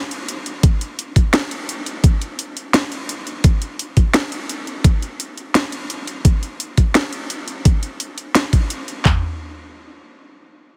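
Half-time drum and bass at 171 BPM with a swung sixteenth-note feel, cinematic and heavy, cut from a longer piece. One overdriven electronic kit carries a cracking snare and bright hi-hats from 0.1 s, while a second, louder overdriven kit joins at 0.6 s with a knocking kick, handclaps and toms, both layered and pushed up front with a small-room character. Light reverb and a heavily compressed, radio-like sound give the drums a gritty, boxed-in edge, and the music shifts into a new section at 9.1 s.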